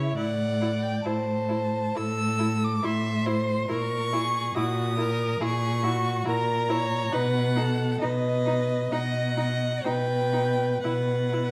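Rubato and slow at 60-71 BPM in 4/4, this lyrical classical fragment from a string quartet movement unfolds in a recital hall with moderate reverb and a dark, warm production. A rich first violin carries the melody with vibrato and expressive portamento, while a second violin sings a focused, smooth second line beneath it, and a distant viola holds an even accompaniment in the background. Up front, a close cello anchors the bass with its own vibrato and portamento, as the harmony moves from Amadd11 through A#m7b5 to B before settling on Bsus4 at 10.8 seconds.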